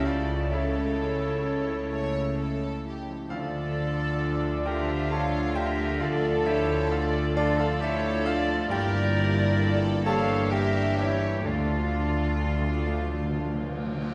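Cinematic film score for full orchestra, bittersweet and sorrowful, moving at a slow, rubato 43 BPM in 6/8 and D harmonic minor. A soft, floating violin section carries the melody over oboe, a darker lush violin section, silvery flute and vintage-toned clarinet on second lines, with clear grand piano and a hushed viola section in accompaniment, mellow distant French horns holding chords, ringing thumb-plucked harp arpeggios, and rich cellos and up-front double basses anchoring the bass. The chords move from A/C# through Dm and Gm back to Dm, where hard-mallet calf-head timpani add a dry, articulate fill from 11.5 seconds, all set in a wet scoring-stage reverb heard from further back in the room.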